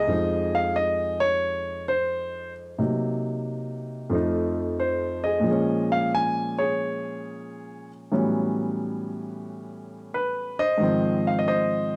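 A warm grand piano carries this solo jazz excerpt alone, its sound intimate and natural, placed up front with audible action noise from the instrument itself. The mood is late-night and smoky, set at 90 BPM in 4/4 with a swung eighth-note feel, in F minor and tuned to A4 = 439 Hz. Across its twelve seconds the piano spans F2 to Ab5, moving from Fm7 through Cm7b5, F7 and Bbm7 before reaching A13 at 8.1 seconds and settling on Ab6 at 10.8 seconds. The recording has a dry, close studio character in a 1970s style, with a touch of studio reverb around the piano. Cut from a longer piece, it offers a brief glimpse of a single passage.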